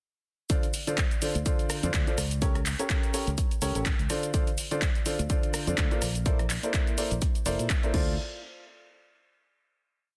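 A worn, woody and slightly detuned upright piano plays a rhythmic chord riff through Dm7, A7b9/C# and Bbmaj9#11 in this short, bittersweet and soulful piano house piece in D minor at 125 BPM, colored by tape echo and sidechain pumping, together from the start with a punchy four-on-the-floor electronic kick and a programmed house kit of hi-hat, cabasa, rim click, handclaps and crash. A syncopated fingered electric bass riff, also pumping, enters at 1.4 s before everything gives way to a final hit at 8.2 s, all in a dry, dense and heavily limited mix.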